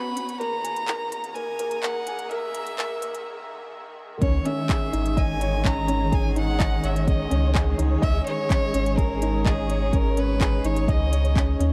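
A felt-muted upright piano carries the riff in this moving, melancholic piece of piano and strings electronica, its soft, intimate tone sitting at the heart of the mix under a shimmer reverb. Above it, a single clear violin plays the melody with vibrato and a biting, intense edge, while a dark, distant chamber string section holds sustained bowed chords that pump with sidechain and share the same shimmering reverb. An organic electronic drum kit adds crisp hi-hats and handclaps with a tape-warm character from the start, over a straight 4/4 at 126 BPM in C# dorian. The opening build-up rests on a G#sus2 chord and pauses for a short break at 3.3 seconds, and at 4.2 seconds the drop lands on C#sus2, bringing in a deep, layered electronic kick and a round, up-front sine sub bass that pumps with the sidechain. Light small-room ambience and a high-pass filter frame this brief cut from a longer piece.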